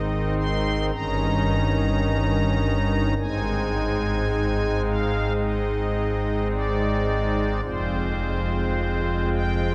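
Serene and reverent, this brief classical fragment is a chorale-style piece for solo pipe organ, taken from a longer work and moving in a free, rubato 4/4. The organ speaks through its string stops with a celeste, giving a soft, shimmering tone and a romantic voicing that sits up front in the sound. Its range reaches from a deep F1 in the bass up to C6, filling the space from low foundation to airy treble. The harmony rests on Ab, turns through Eb7/G, settles back on Ab at 3.2 seconds and shifts to Fm at 7.6 seconds. A wet cathedral reverb with a five-second decay surrounds every chord, letting each sonority linger and bloom in the vast acoustic until the fragment ends at 9.7 seconds.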